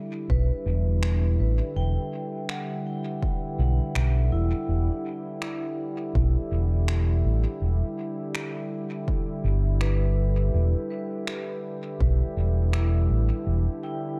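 A round, dark fingered electric bass sits up front from 0.3 seconds in this hazy, deep ambient dub fragment at 82 BPM in E minor with a swung sixteenth feel, entering over a smooth, warbling analog pad that holds an Em9 chord from the very start with chorus and vintage 12-bit sampler grit. Alongside the bass come a punchy, layered electronic kick drum and a bright, ringing vibraphone playing arpeggios through tape echo, with tape-toned electronic finger snaps carrying dub echo from 1.0 seconds, all inside a dusky digital ambience.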